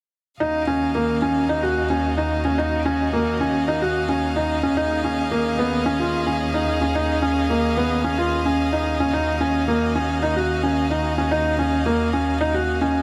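From 0.4 seconds a soft, felt-muted upright piano sits up front with its action noise audible, playing a delayed riff, while a clear, focused string quartet with vibrato holds sustained chords above and a dark, veiled double bass section bowed con sordino anchors Eb2, all within a huge ambient reverb in this melancholic, cinematic electronica passage in Eb minor at 110 BPM, cut from a longer piece and moving from Ebm9 to Dbadd9/Eb and back.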